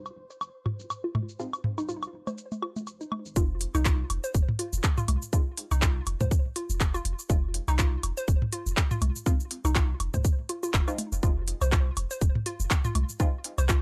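Quirky and cool, this minimal techno piece opens on a filter sweep, with a swarming, detuned drone hovering in the background over a deep sub bass whose pitch-drop attack is shaped by tube saturation and sidechain pumping. A layered drum kit of smooth hats, cabasa and handclaps sits beside dry, analog woodblock, toms and congas through tape echo, while a hollow, bouncy square-wave pluck riff carries chorus and analog delay, and muted dub chord stabs with phaser and tape echo enter at 1.4 seconds. At 3.4 seconds the drone stops and a tight, up-front electronic kick lands for the drop, all within a gritty hardware recording colored by transformer saturation.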